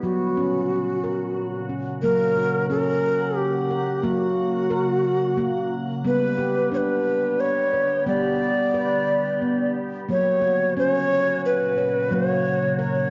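World meditative music in a gentle triple metre with a soft swing, cut from a longer piece. A breathy, reedy low wooden flute carries the melody up front with vibrato and tongued notes, touched by analog delay, while a handpan rings out arpeggios from dark steel and a glassy FM pad holds ethereal chords beneath, thickened by ensemble chorus. The home cassette recording sits in a wet spring reverb with a soft, rolled-off top, and the harmony moves from F# to G at 6.1 seconds before returning to F# at 10.1 seconds.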